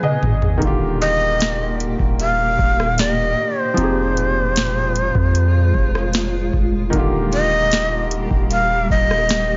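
A short felt-piano fill and a drum fill open this tender, romantic contemporary R&B excerpt, cut from a longer piece in Eb major at a straight, unhurried 76 BPM in 4/4. The muted upright piano sounds soft and intimate through its thin felt, while the booming analog drum machine brings a deep kick, crisp snare, metallic hats, rim clicks and toms, overdriven and re-recorded in a small room. Up front, a breathy, bright shakuhachi carries the melody with a reedy, bamboo tone, gentle vibrato and a trail of digital delay. A granular cloud pad holds blurred, detuned chords in its own built-in reverb, pumping under sidechain, as a long, sine-like 808-style bass enters at 0.2 seconds with a fast attack and mellow decay. The harmony moves from Abmadd9 through Ebmaj7 and Fm7 back to Ebmaj7, all within a lightly reverberant digital ambience whose top end is softly rolled off.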